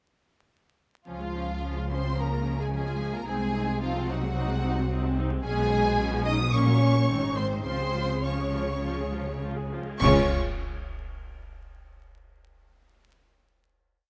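A close, detailed recording with vinyl crackle and moderate stage reverb frames this spirited classical piece in Db major at 100-112 BPM, where lush vibrato violins sing the melody over a second violin line doubling it at the octave, a rocking viola figure, background French horns, a focused cello bass and an up-front double bass, slowing from 4.4 s before dark cymbal swells, crashes and bass drum strokes enter at 7.7 s and a band accent at 10.0 s lands on the final chord.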